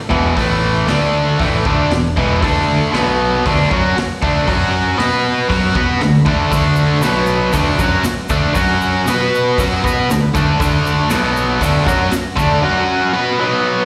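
Garage rock for a duo or trio, rowdy and swaggering at 117 BPM in a straight 4/4, heard as a live gig through the venue's PA with recital-hall reverb: a biting, double-tracked overdriven guitar sits up front with slapback echo, picking a riff through power chords like A5, D5, E5 and B5, over a growling picked electric bass thick with tube saturation, a raw, gritty small-room drum kit of punchy kick, medium-tuned snare and hi-hat with a rolled-off top, and a grainy tube shaker joining in the background at 6.5 seconds, all in a cut from a longer piece where the guitar rings on alone to 13.8 seconds.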